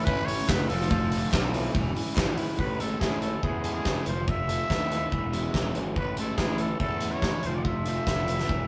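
Indie rock with a jangly, upbeat mood, this short clip cut from a longer piece has a raspy, growling trumpet with light vibrato carrying the melody over two picked, overdriven guitar riffs, one crunchy and the other bright and set in the background. A fuzzy, growly electric bass and a big, up-front acoustic drum kit with a fat snare and punchy kick drive it along, while a faint, distant group handclap appears only from 0.5 to 2.3 seconds. The band sounds as if playing live in one room with moderate reverb, cycling through Amaj7, Fmaj7 and C#m/E.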